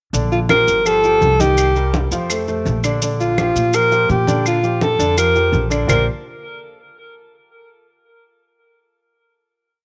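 Afro-Cuban jazz in a sunny, lively mood, this brief complete piece sets a breathy alto saxophone up front with light vibrato and tape echo, spinning hook-like motifs over a warm concert grand piano playing a polished montuno in octaves and a dark, woody upright bass in a tumbao that anticipates the chords. Low-tuned congas with thick skins, soft hands, slaps and open strokes sit in the background, joined by close, dry, grainy maracas, and woody claves enter at 0.5 seconds with a two-bar time line. The tune settles onto a final chord at 5.9 seconds, all framed in light studio reverb.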